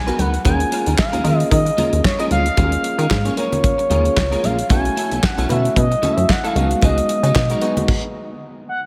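Early-eighties boogie funk with a danceable, slick swing: a smooth, sawtooth synth lead with vibrato, chorus and delay carries the melody up front over a punchy, plucky analog bass, tine electric piano, a bright, scooped clean guitar riff with ensemble chorus, a tight, dry 70s drum kit with handclaps, and very quiet congas, all bathed in a dreamy church reverb until the band stops at 7.9 s and the lead rings on to 8.8 s.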